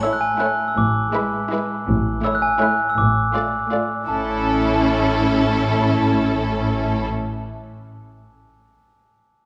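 A triple-metre pulse carries this magical, quirky excerpt from a playful, whimsical film cue, in which a mellow, bell-like glockenspiel played with rubber mallets sits dry and up front with the melody over a focused violin section, a lush second violin line and a distant viola accompaniment, while a soft-attack cello section and an expressive double bass section enter on the bass at 0.8 seconds, all in a moderate scoring-stage reverb.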